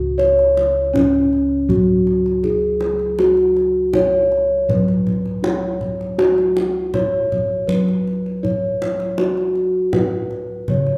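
This is a serene, shimmering Javanese gamelan excerpt at 80 BPM in a straight 4/4. A ringing bronze metallophone carries the melody up front, struck with padded disc mallets for a mellow, soft tone, while bossed gongs supply a round, beating bass with a boxy, close sound. From 0.2 s, a deep kendang played with soft hands sits distant in a large room, and the whole passage carries a recital-hall reverb.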